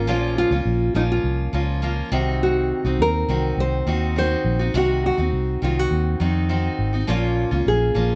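Acoustic pop at 103 BPM in a straight 4/4, this short excerpt cut from a longer piece carries a wistful, reflective mood. A bright, fingerpicked nylon-string guitar with fresh strings and the depth of a classical body carries the melody between Eb4 and C5, with finger squeaks audible on the strings. Beneath it, a full-bodied jumbo steel-string acoustic guitar, picked and placed up front, supplies the accompaniment, its own finger squeaks adding texture. A dark, foam-muted vintage electric bass, round and punchy through its amp, sits up front and holds the low end from Ab1 to F2. The harmony moves from Bbm to Cdim at 2.1 seconds and returns to Bbm at 7.1 seconds, all within light reverb.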